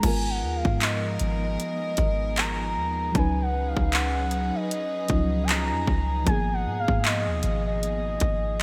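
A gliding sine lead with portamento and vibrato carries the melody through this brief, sensual late-night excerpt of contemporary R&B, drifting at 77 BPM in G# dorian over a swung 16th-note feel and chords moving from G#m69 to C#9sus4 at 3.1 seconds and back at 6.3 seconds. Underneath, a round, warbling FM electric piano with chorus, a dark sul tasto string section pumping to the sidechain, and a deep, boomy 808-style bass fill out the harmony. A trap kit of hard-clipped kick, handclaps, bright hi-hats and crash cymbal sits up front with gated reverb, all framed by a lush hall and bright 1980s-style digital production.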